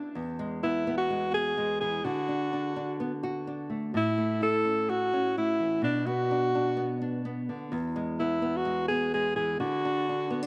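Sunny and carefree, this highlife passage moves at 127 BPM in a straight 4/4 and is cut from a longer piece. A breathy alto saxophone carries the melody as a jazz-style solo, sitting up front with light vibrato and a smooth top between D4 and A4. Beneath it, a small, fingerpicked nylon-string guitar provides acoustic accompaniment from E2 to F#4, also placed up front and sounding warm. Both parts play together for the full 10.5 seconds, moving through E, D, A, B minor, then E and D again. A wet plate reverb with a long 2.7-second tail bathes the recording in a glowing, spacious ambience.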